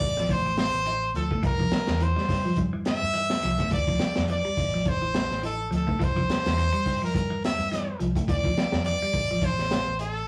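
Afrobeat in D minor at 105 BPM, this hypnotic, driving cut from a longer piece sets a swung sixteenth-note feel in 4/4 across a single section of about 10 seconds. A brilliant, forceful trumpet carries the solo melody up front, playing with light vibrato in a punchy pop style, though its tone sounds distant and roomy. Underneath, a clean, picked electric guitar spins arpeggios through a phaser and slapback echo, while a vintage fingered electric bass, foam-muted, dark and round, holds the low end. The crunchy breakbeat kit of hi-hat, kick and snare is gritty and saturated, with a punchy kick, a high-tuned snare and a rolled-off top that keeps it dark and smooth. The chords move between Dm9, C7 and C, and the whole take has the rough feel of a rehearsal-room recording, with studio ambience and moderate reverb.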